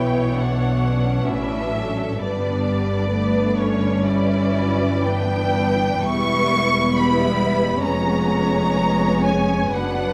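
A clear, intense violin section carries the melody with vibrato from a distant place in the hall, over a softly attacked, expressive second violin line, a close and focused viola accompaniment, and a rich, even bass of cellos and double basses, in this melancholic, elegiac fragment of a slow romantic movement for string orchestra, played rubato in 4/4 at 58-69 BPM and bathed in wet recital-hall reverb as the harmony moves from Bm through G and Em to C#7/E#.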